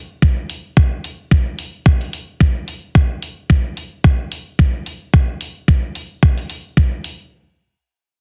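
A thumpy, sampler-style electronic kick drum leads this short nu-disco excerpt, entering at 0.2 seconds with an overdriven punch and a sense of a large room around it. An electronic hi-hat joins at 0.5 seconds, layered and produced, also overdriven and carrying the tighter air of a small room, sitting up front beside the kick though lower in level. The groove moves at 110 BPM in 4/4 with a light 55% swing on the sixteenths, giving the beat a sleek, groovy feel. The sound is dry and heavily compressed, with a radio-like density. Both drum parts run nearly the whole length, the kick stopping at 6.9 seconds and the hi-hat carrying on to 7.2 seconds.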